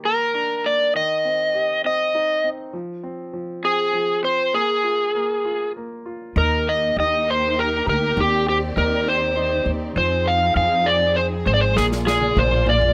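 This rough home demo mix carries a light reverb, capturing a short excerpt of a swaying, romantic pop ballad in 6/8 at 67 BPM in Eb major. An overdriven slide guitar sits up front and carries the melody from the start, its electric tone gritty yet rounded as it moves between G4 and F5. Beneath it, a clear concert grand piano plays the accompaniment from 0.0 seconds, present and polished with a deep low end and short sustain, moving through Ebmaj7, Cm/Eb, Fm and Bb5. At 6.4 seconds a lush, bowed studio string section joins with sustained chords, expressive vibrato, portamento and a smooth top, while a woody, growly pizzicato upright bass enters up front with a thumpy steel-string punch. The harmony deepens to Cmadd9/Eb, Fm7 and Bb7 before a natural country drum kit, airy and acoustic with a medium-tuned snare, plays a fill on snare and toms from 11.8 seconds to the cut.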